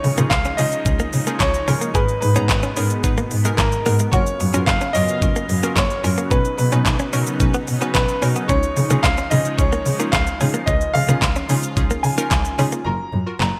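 A baby grand piano with an open, long-sustaining tone and delay carries the melody in this euphoric, carefree dance-pop excerpt at 110 BPM, over a crystalline wavetable pluck with chorus in the background, a detuned sawtooth supersaw swell with lush chorus and sidechain pumping, a clean, compressed direct-recorded electric guitar riff in lush chorus, a dark, woody bowed double bass, and an up-front pop drum kit of knocking kick, fat snare, crisp hats, handclaps and shaker under gated reverb, all in a bright 1980s-style digital production.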